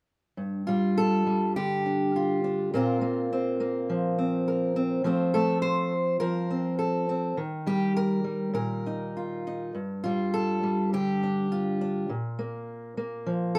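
Lightly reverberant and up front, this short, melancholic and wistful folk cut from a longer piece features a boxy, fingerpicked steel-string acoustic guitar alone from 0.4 to 13.6 seconds, moving at 102 BPM in a straight 4/4 through G minor over G5, Bbsus2, F, Ebadd9 and back to G5 before closing on Bb5.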